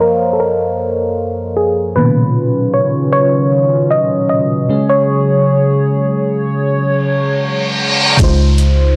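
A mellow, round FM electric piano leads this smooth, dreamy contemporary R&B excerpt at 77 BPM in Db major, its soft chords coloured by chorus and phaser while a filter sweep shapes its tone, and a downlifter and reverse cymbal mark the opening and closing moments. From 2.0 seconds a hollow, flute-like pad holds sustained chords, and at 8.2 seconds a deep, boomy 808-style bass and a smooth electronic drum kit with a knocking kick and metallic hats arrive on a Dbmaj9. The dark production sits in light reverb over a gently swung sixteenth-note feel.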